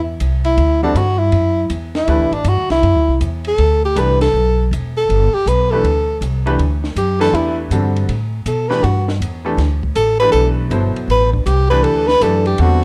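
A breathy tenor saxophone leads this intense, searching modal jazz passage from 0.5 seconds, taking an up-front solo with subtone, scooped notes and light vibrato over a swung 4/4 that moves from D13sus4 to A13sus4 at 8.1 seconds. A woody, growly pizzicato upright bass sits up front from the very start, while a small cocktail kit adds dark cymbals, a high-tuned snare and a tight kick on hi-hat and ride, and a bright baby grand piano with short sustain joins on accompaniment at 0.8 seconds. The dark, warm production carries light reverb, and the passage is cut from a longer piece.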